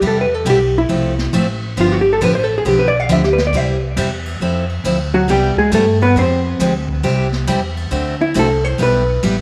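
Down-home and playful, this short cut of country western swing moves at 137 BPM in 4/4 with a swung eighth-note feel, set in C major. A dark, clean hollow-body electric jazz guitar carries the melody as a solo through the whole 9.4 seconds, sitting up front with a tape echo trailing its fingered lines. Beneath it, a bright, full-bodied steel-string acoustic guitar with fresh strings provides picked accompaniment, also placed up front, while a woody pizzicato upright bass anchors the low end. The jazz brush drum kit sits further back, with dark cymbals, a high-tuned snare and a boomy kick, and adds a brief fill at 3.1 seconds. The chords move through jazzy colors such as Cmaj7, Fmadd9 and D7 before resting on G6, and a moderate echo-chamber reverb with a small-room ambience surrounds the whole ensemble.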